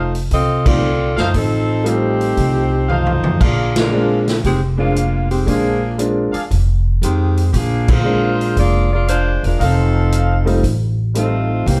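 Big band swing, energetic and brassy, with a smooth-topped saxophone section playing the melody with light vibrato over mellow, loose trumpet stabs, a woody, thumpy pizzicato upright bass, a boomy, roomy drum kit that adds a fill, and clear baby grand piano accompaniment, all heard from further back in a moderate club reverb, with band accents at 0.6, 3.7 and 7.8 seconds.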